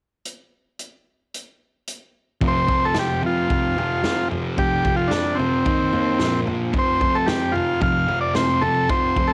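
A buzzy, up-front combo organ carries the melody in this raw, rowdy garage rock excerpt, entering at 2.5 seconds alongside a thick, double-tracked fuzz guitar riff that works through F5, Eb5 and Bb5 power chords, after a vintage drum kit with a punchy kick, medium-tuned snare and rolled-off top has opened alone from 0.3 seconds, all captured as a cassette home recording with light studio reverb.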